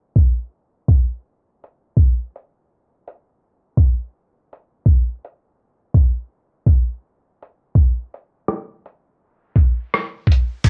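Nostalgic and cosy, this lo-fi hip hop excerpt at 83 BPM in 4/4 with a 63% swing on the 16ths sets an up-front, gritty sampler-style drum kit of thumpy kick, hi-hat, rim click, shaker and crash cymbal under a filter sweep through its first 10.6 seconds, before a very quiet, deep, saturated sub bass sounds an Ab1 at 10.6 seconds, all heard with little reverb through a dry cassette home recording with a low-pass filter.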